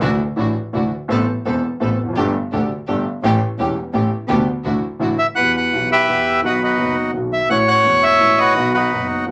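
Dramatic and sultry, this brief cut from a longer tango moves at 169 BPM in a rubato 3/4, shifting into E dorian at 5.4 s as a reedy, bright bandoneon enters up front at 5.2 s to carry a full, close-miked melody. Beneath it, a warm concert grand with deep bass and short sustain plays accompaniment throughout, while a distant, earthy bowed double bass holds the low end with light vibrato. A smooth, even symphonic string section adds bowed stabs until 5.2 s, all set in a wet small room.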